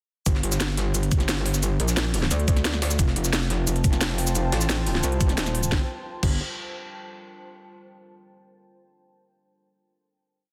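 At 0.3 seconds this short, dark technical drum and bass piece drops straight in at 176 BPM in G minor, with a metallic, aggressive FM wobble bass up front playing modulated phrases whose wobble speed changes, saturated with overdrive and thickened by chorus. Alongside it, a knocking electronic kick drives a broken-beat pattern, while a tight, layered drum kit adds cracking snares, crisp closed and half-open hats, cabasa and crash. Further back, a gritty, pitched-up jungle sampler kit runs a looped, edited breakbeat with a high-tuned snare and filtered hats. Over the Gm to F movement, a deep, moody ambient pad of detuned, wave-folded layers fades in slowly at 3.7 seconds, pumping with sidechain compression under chorus and reverb. The drop resolves onto a final Gm chord at 5.7 seconds, and the dense, heavily limited master keeps the whole mechanical, brooding mood tight and forceful.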